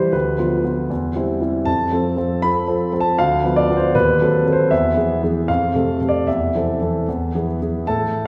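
A classical-period piano sonatina in 2/4 at 78 BPM, this brief fragment cut from a longer piece carries a dramatic, serious mood, played on a solo concert grand piano spanning D2 to B5 from 0.0 to 8.3 seconds. The instrument sits up front with an intimate, natural character, deep bass, long sustain and audible action noise, bathed in a wet concert hall reverb with a 2.2-second decay. The harmony moves through diminished colours such as Bdim/D and D#dim7 toward E, with Am/E arriving near 6.3 seconds before closing on E.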